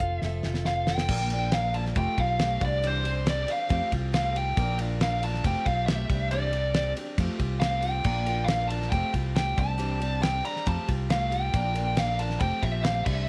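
A straight 4/4 pulse at 138 BPM drives this folk rock and heartland rock excerpt, with a damped 70s drum kit opening on a fill from 0.2 to 1.1 seconds before settling into a dry groove of fat snare, tight kick, hi-hat, ride and crash. Underneath, a fingered electric bass sits up front with a punchy, direct-and-amped tone, anchoring a cycle that moves from F through Bb, Fadd9 and Cadd9 and circles back again. A picked steel-string acoustic guitar fills in the accompaniment with a bright, boxy parlour character, finger squeak audible in its playing. Over the top, a nasal lead guitar with a parked wah carries the melody, its overdriven tone thickened by slapback echo and placed prominently in the mix. A small room reverb lends the whole performance a close, lived-in space, suiting the warm, open-road mood of this fragment cut from a longer piece.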